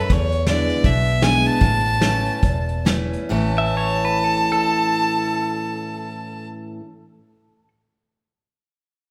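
Honky-tonk and classic country in 4/4, this short cut from a longer piece carries a nostalgic, easygoing mood at a swung pace between 130 and 163 BPM in A major, easing slower through its opening stretch. An earthy, clear fiddle carries the bowed melody up front with light vibrato, while a full-bodied, bright steel-string acoustic guitar, also up front, is picked beneath it with audible finger squeak. A round, foam-muted vintage electric bass adds a dark, amped low end, and a smooth brush drum kit with a tight kick and medium-tuned snare plays until 3.2 seconds. A twangy, compressed clean electric guitar enters at 3.6 seconds with a picked second line and lingers to 7.7 seconds. The harmony moves from E7 to A, and a moderate recital-hall reverb gives the whole performance the sense of a church or concert hall.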